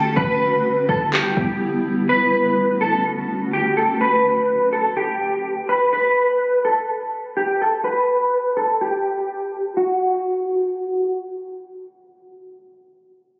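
Heard through a phone in a room, muffled by a low-pass filter, compression and club reverb, this dreamy, blissful fragment of half-time atmospheric cloud-rap opens with a cloudy, detuned granular pad sustaining G6 and Dmaj7 chords with its own reverb and sidechain pumping until 4.0 seconds, while electronic handclaps and a soft kick from a smooth R&B kit sit up front only until 1.5 seconds, a filter sweep runs to 9.8 seconds, and a dark, slightly broken-up electric guitar carries the fingered melody through ensemble chorus and tape echo to 11.2 seconds.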